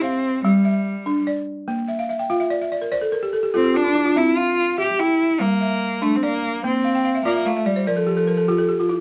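In a straight 12/8 lilt at 97 beats per minute, this short, joyful and hypnotic West African traditional passage rests on a close-miked, up-front balafon whose woody, buzzing arpeggios, struck with rubber mallets, break into fills at 1.9 and 6.8 seconds. A single bowed cello carries the melody, also up front, its bright, intense tone smoothed at the top and touched with light vibrato, over chords moving from G5 through Bb, C and Gm back to Bb. A moderate small-room reverb frames the pair, while the balafon itself stays dry and full.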